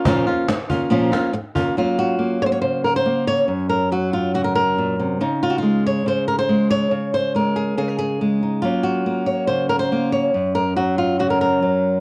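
A straight 4/4 pulse at 140 BPM drives this passionate, mournful flamenco excerpt, where an up-front, fingerpicked flamenco guitar with warm fresh strings carries the melody over Bbm, Gb and Dbsus2 chords through 12.0 seconds, joined almost at once by a snappy, distant cajon played with hard hands in a large room, which plays a fill from 1.1 to 1.8 seconds before falling away, all wrapped in moderate studio reverb and the warbling pitch drift of worn old cassette tape.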